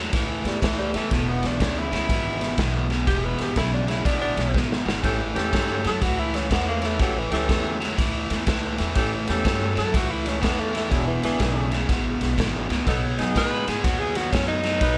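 A crunchy, overdriven electric guitar riff and a woody, thumpy pizzicato upright bass open this swaggering, gritty electric blues shuffle at 122 BPM in E mixolydian, soon joined by a saturated garage drum kit with a punchy kick, ride cymbal and snare in a bright stone room. A distant tenor saxophone takes a jazz-style solo with subtone, light vibrato and scooped notes over chords moving from A through E7 and A7 to B7. After a drum fill at 4.5 seconds, a smooth-topped horn section adds jazz stabs from 5.0 seconds in this excerpt from a longer piece, all in light reverb.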